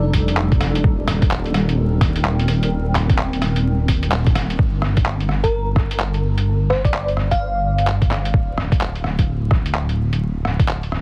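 A swung sixteenth-note groove in 4/4 drives this nocturnal, melancholic future garage cut, taken from a longer piece. A muffled, thumpy electronic kick and a lo-fi sampler-style kit of handclaps, hi-hat and rim click share a pitched-down, tape-softened character with vintage 12-bit grit, as if re-recorded in a small room. Beneath them, a deep, rumbling detuned saw bass sits up front with beating tones and sidechain pumping, while a cloudy granular pad carries blurred, evolving chords over F13 and Eb6 until 4.6 seconds, breathing with the same pumping and its own reverb. After a band accent at 4.1 seconds, the harmony drops away, and a sparkling, bell-like FM electric piano, heard only in a brief touch at the very start, returns at 5.4 seconds with a decaying melody coloured by chorus, phaser and tape echo. The whole track sits in a digital ambience with a heavily compressed, radio-like sound and a bed of vinyl crackle.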